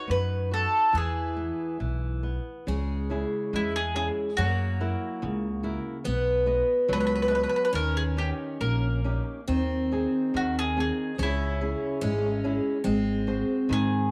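Passionate and mournful, this fado-style ballad in C# minor moves at a rubato 71 BPM in 2/4, heard as a cut from a longer piece. A bowl-back mandolin carries the melody up front, its bright, picked double strings ringing between E4 and C#5. Beneath it, a picked twelve-string acoustic guitar adds a shimmering, octave-doubled second line with a full-bodied jumbo tone and audible finger squeak, while a flamenco guitar with fresh strings supplies fingerpicked accompaniment in a warm voice. The upright bass enters at 0.1 seconds, pizzicato on steel strings, woody and growly, sitting up front alongside the mandolin. After a brief opening on B and E, a longer passage from 2.7 seconds travels through C#m, F#7, B, D#7 and G#/D# before returning to C#m and closing on G#7, all set in a wet spring reverb with studio ambience.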